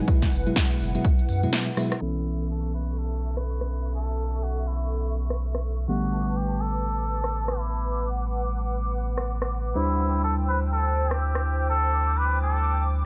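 A veiled, cup-muted trumpet enters at 2.0 s with a soft, jazz-style solo full of vibrato and scooped notes, trailed by analog delay, over a moody, smooth deep house groove at 124 BPM in B minor with a swung sixteenth feel. Beneath it, a hollow, flute-like pad holds sustained chords and a dark, round FM electric piano plays chorused stabs, both pumping with the sidechain alongside a deep sine sub bass. A punchy kick drives only the opening second. A deep house kit with a punchy snare and smooth, filtered hats plays through a short break and fill before a filter sweep begins at 2.0 s, with a faint downlifter, low-passed digital ambience and suspended ninth chords rounding out this excerpt from a longer piece.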